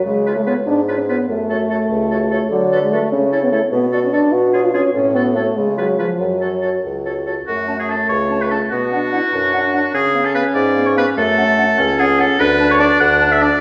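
Classical-period wind quintet music in F# minor, this quick, lively movement moves in a straight 6/8 at 98 BPM, tuned slightly low to A4 = 439 Hz, with harmony circling between F#m, D, Bm and C#7. A mellow, soft-attack French horn and an up-front bassoon open at 0.0 s, joined at 0.3 s by a very quiet, distant flute carrying a pure, crisp-edged melody with vibrato, a clear oboe on a prominent second line, and a roomy, warm clarinet filling out the accompaniment. Everything sits in the wet reverb of a recital hall with a 1.5 s decay, and the spirited phrase heard in the first 7.5 seconds returns before the passage breaks off at 13.6 s.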